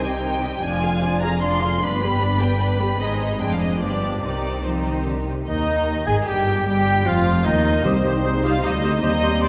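Muted violins carry a veiled, dark melody through this stormy, dramatic classical-period movement for symphony orchestra, a quick 3/4 at 152 BPM played with rubato in C minor, over a second violin line, background violas, and cellos and double basses holding the bass, all con sordino and bowed with vibrato. At 5.5 s the music turns to Eb major as an airy, hollow flute, a roomy, distant oboe, a background clarinet and a mellow, punchy French horn section join with second lines and sustained chords. A very quiet, round timpani note sounds at 7.9 s as the harmony returns to C minor, all set in a wet concert hall reverb in this fragment of a longer piece.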